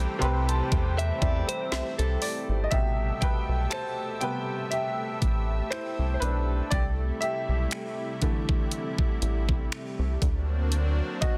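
Contemporary R&B at a slow 60 BPM in A minor, sensual and late-night, with a gently swung 16th feel and a dense, heavily limited modern sound in digital ambience. A clear, worn grand piano plays a fill before taking a solo from 2.7 seconds, moving from Am7 to Am9 and on to D7b13 at 10.2 seconds, over a lush, detuned sawtooth pad with chorus and a rubbery, hollow square-wave bass with a dark filter pluck. The produced, tape-warm drum kit brings a knocking kick, a woody snare with soft clipping, warm hi-hat and finger snaps, while a direct-recorded clean electric guitar adds brief picked arpeggios with delay between 1.0 and 2.7 seconds.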